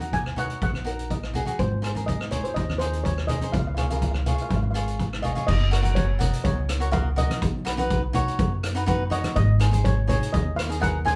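From the first beat a mellow, shimmering double-seconds steel pan carries a sunny, festive calypso melody in F# major at 124 BPM, over crisp picked cavaquinho, a dark, woody pizzicato upright bass that sits loudest in the mix, an up-front street-band kit with a boomy kick, rim clicks, hi-hat and dark crash cymbals, and soft-handed, thick-skinned congas, all played live together in a small room as the chords move from D#m through G# and C# before turning to F# at 5.5 seconds.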